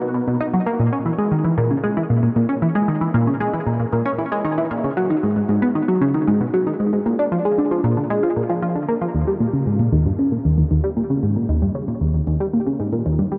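Ambient piece at 115 BPM in a straight 4/4, cosmic and expansive in mood, in which a tight, driving sequenced synth plays alone and up front from 0.0 to 13.4 s, its sawtooth, pulse and sine tones wave-folded into a fast-attack filter pluck over sustained notes, dressed in chorus, phaser and tape echo and set in a huge ambient reverb, with a new section arriving at 9.1 s in this cut from a longer piece.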